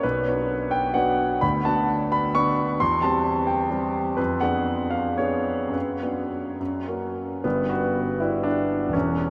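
A concert grand piano carries this passionate, brooding romantic character piece on its own, sounding intimate and up front, with deep bass, long sustain and the clatter of its action audible beneath the notes. The music moves in 6/8 at roughly 68-91 BPM counted in dotted quarters, pushed and pulled by free rubato, and the instrument is tuned slightly high to A4 = 441 Hz. The harmony darkens from B minor through C over E and a diminished seventh on F, before settling on F# at 6.6 seconds and turning to G at 7.4 seconds as the opening section begins again. The playing spans from the low E1 up to C#6, so the phrases reach into the instrument's depths as well as its upper register. A huge, wet reverb places the piano in a vast, echoing hall, letting each chord hang long after it is struck. This is a brief excerpt, about 9.3 seconds lifted from a longer piece.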